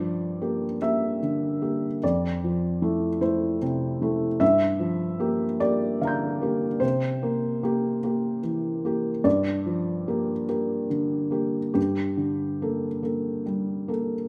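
In a 6/8 with uneven, rubato beats, this reflective, melancholic fragment of neoclassical minimalist piano features a solo felt-muted upright piano, intimate, boxy and up front with audible action noise and light reverb, drifting from Gm7 through Fmaj7 and C7 before settling on Gmadd9.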